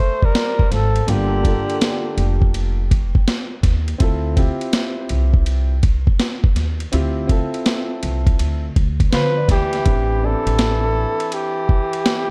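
A breathy, whispered flugelhorn carries the melody from the opening beat, shadowed by a distant, subtoned tenor saxophone on a lower second line, both bathed in plate reverb, the flugelhorn also trailing tape echo. This is nocturnal, smoky jazz-hop at 82 BPM in 4/4, with a lazy swing on the sixteenths and chords moving from Gm9 to Dm9 and later Am11. A gritty, pitched-down boom bap kit arrives almost at once, its thumpy kick and high-tuned snare compressed and up front alongside hi-hat and ride, re-recorded in a large room. A woody pizzicato upright bass enters at 0.7 seconds, and a boxy, mellow grand piano fills in the harmony beneath. The horns drop out after the opening bars and return at 9.1 seconds with vibrato and scooped notes as the music shifts into a new section. The whole cut has a dark, warm production with little reverb on the room, a fragment of a longer piece.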